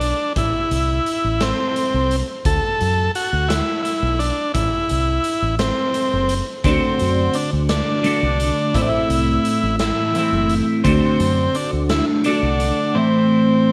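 A moderate plate reverb and small room ambience frame this trippy, mysterious psychedelic rock excerpt in A dorian, moving in a slow 6/8 at 57 BPM as the harmony rocks between Am and D. An up-front, buzzy combo organ with light vibrato and slapback echo carries the melody over a punchy fingered electric bass and a raw garage drum kit whose gritty, saturated hi-hat, kick and snare pump in a bright stone room with a rolled-off top. At 6.6 seconds a twangy, double-tracked twelve-string electric guitar enters with a phased, compressed riff, and it and the organ ring on after the bass and drums stop near 12.8 seconds.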